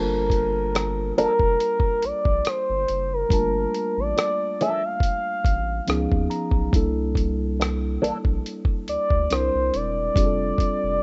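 A smooth, gliding portamento lead with chorus and vibrato carries the melody up front in this introspective, late-night neo-soul R&B excerpt at 70 BPM in G dorian, set over a lightly swung 16th feel. A mellow tine electric piano moves from Gm9 through C#9 and C13 toward F6, adding a fill at 5.4 seconds, over a round, dark analog bass. A dusty, gritty sampler-style kit with a thumpy kick, hi-hat and rim click sits up front, and a clean, fingered electric guitar with wah plays a second line until 8.2 seconds, all in a dry, rough home-demo mix with a rolled-off top end.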